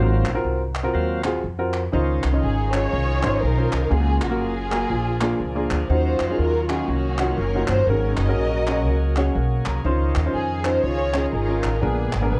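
A gritty, overdriven tonewheel organ with key click and a slow rotary speaker takes a brief solo in the background over woody upright piano and a thumpy pizzicato upright bass, setting a soulful, hopeful uptempo gospel feel at 121 BPM in Db major with a swung 4/4 lilt. At 2.4 seconds a lush, bowed symphonic string section enters up front with expressive vibrato to carry the melody, while hollow group handclaps, present since 0.3 seconds, sound from a live room. The chords move through rich extended harmonies such as Dbmaj9, Ebm9 and Ab9sus4, and the whole piece, cut from a longer work, has a moderate studio reverb and a cassette tape character.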